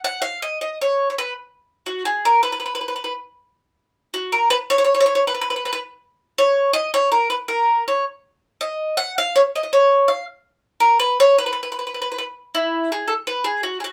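Romantic and lively, this short Italian folk excerpt features a solo bowl-back mandolin, its picked double strings sounding warm and up front, moving freely in 6/8 around 107 BPM in B major. The playing stays between E4 and F#5, with an opening phrase repeated before a new section arrives at 12.5 seconds. A moderate studio reverb gives the acoustic mandolin a natural sense of room.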